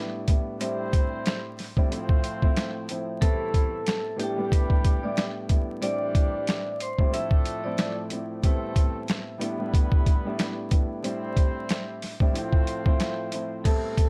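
Boom-bap hip-hop at 92 BPM with a swung 16th-note feel, this gritty, reflective excerpt sits under light reverb and vinyl crackle, moving through seventh and added-ninth chords held over a steady A in the bass. A dark, vintage concert grand with deep bass plays the accompaniment through a cassette-tape colour, while a mellow, tight jazz horn section adds octave-doubled stabs with light vibrato, plate reverb and tape echo. A compressed, pitched-down sampler-style kit with a thumpy kick and medium-tuned snare sits up front from 0.3 seconds, and a metallic, ringing vibraphone with slow motor vibrato carries the melody from 3.2 to 7.9 seconds before returning briefly at 13.6 seconds.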